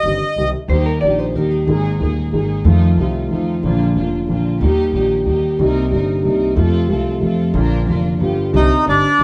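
Melancholic and sultry, this short cut from a longer tango in Eb major moves at 184 BPM in a rubato 3/4, tuned slightly low to A4 = 435 Hz, with a reedy, mid-forward bandoneon sounding briefly at the start and again at 8.6 seconds over an intimate grand piano with audible action noise and a woody, growly pizzicato upright bass. A dark, clean hollow-body electric guitar adds a picked second line from 0.7 to 2.2 seconds, while a soft-attack bowed string section plays quiet sul tasto stabs with vibrato. The band plays live in one room with a wet reverb, and the harmony passes through Eb, Absus2, F7 and G7 before settling on Cmadd9.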